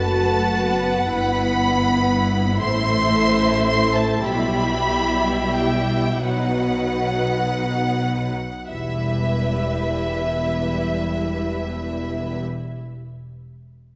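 A slow, elegiac romantic movement for string orchestra opens with all five sections sounding together, cut from a longer piece in E minor and moving in a rubato 6/8 at roughly 22-43 BPM in dotted quarters. A clear, focused first violin section carries the melody high and up front, with a lush, smooth-topped second violin line beneath it. Dark, woody violas fill the accompaniment, while rich cellos and an even, smooth double bass section anchor the low end, every part bowed with vibrato. The opening phrase gradually slows before the harmony settles onto E minor at 8.7 s, where a new, melancholic passage begins and continues until the strings stop at 12.4 s. A wet scoring-stage reverb with a long tail surrounds the ensemble and gives it a spacious, symphonic sound.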